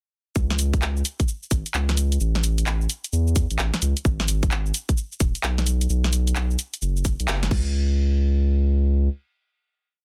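A thick, saturated sub bass drives a skipping, syncopated line from 0.4 to 9.1 seconds in this moody, soulful two-step UK garage piece in C# minor at 130 BPM with a 64% sixteenth-note swing. It plays over a tight, up-front electronic kick and a tape-warm garage kit of cracking snare, skipping swung hats, handclaps, cabasa and crash. The band hits an accent at 7.3 seconds before the drums stop and the bass carries into the final hit, dry and dense in a heavily limited modern master.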